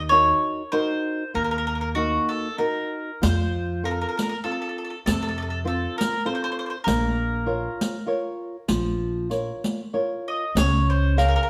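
The mandolin carries the melody up front, its bright, picked double strings giving a woody ring to this passionate, romantic Italian serenade in Bb harmonic minor. It moves at 98 BPM in a lilting 3/4 with a light swing and a rubato feel. Beneath it, a dark, fingerpicked flamenco guitar supplies the accompaniment, while an upright bass played pizzicato adds a thumpy, steel-stringed low end. A riq enters at 3.2 seconds, its dark jingles sounding close and dry against the others. The band plays live together in a stone room whose reverb gives the ensemble a resonant, intimate space, and the harmony passes from Ebm through F and Bbm to Db in this excerpt cut from a longer piece.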